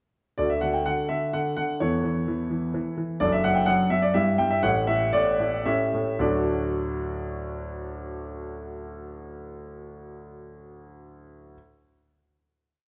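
Playful and elegant, this short classical-period piano sonatina in D major moves in a rubato 3/4 at 107-130 BPM, with a clear, open concert grand sitting up front and carrying a single-line melody over deep, repeated bass notes, slowing from 2.5 seconds before arriving at a final D chord at 6.2 seconds that rings in a moderate recital-hall reverb within a dark, warm production.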